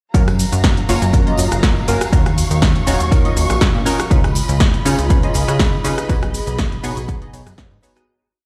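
Filtered disco house with a joyful, sunny mood, this short piece runs as a single drop from 0.1 s and fades out from 5.4 s to its close at 8.1 s. An up-front, tape-warm electronic kick drives a four-on-the-floor pulse, joined by a punchy analog drum machine supplying programmed hats, rim click, shaker and a snare backbeat, while a tambourine sits in the background with a live-room feel. A plucky analog bass plays a funky syncopated line with fast-attack, decaying filter plucks, and a detuned, wave-folded polysynth comp lays down a rhythmic chord riff in close voicing, coloured by chorus and phaser. Lush symphonic strings hold sustained, bowed chords with vibrato and a touch of vintage 12-bit sampler grit. The bass, comp, strings, drum-machine hats and tambourine all pump against the kick, and the harmony moves through F#maj7, D#m9, C#9 and B6 in a bare room with large studio reverb, light reverb and digital ambience.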